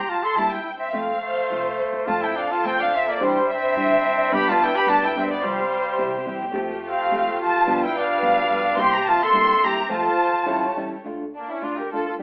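Heard through a narrow telephone-like filter and a wet room reverb, this excerpt captures a mariachi band playing live together, dramatic and passionate, at 107 BPM in 2/4 and F major. A lush, up-front symphonic violin section carries the melody with expressive vibrato while a bright, classical-style trumpet plays a smooth second line beside it, over a thumb-plucked nylon-string guitar and a woody, thumpy pizzicato upright bass sitting in the background. From 2.1 seconds a dark, intimate studio violin section adds sustained bowed chords with light vibrato, and the harmony moves through C7, F and G7 before turning to D minor at 11.1 seconds.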